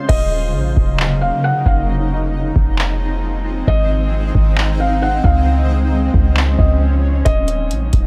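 A booming analog drum machine with a deep kick, metallic hats, handclaps and crash sits up front beside a boomy, sine-toned 808-style bass in this hazy, spacious half-time cloud-rap fragment, while a shimmering, ethereal ambient pad with chorus and its own reverb pumps under sustained chords and a soft, intimate felt-muted upright piano carries the melody through a low-pass filter and tape echo.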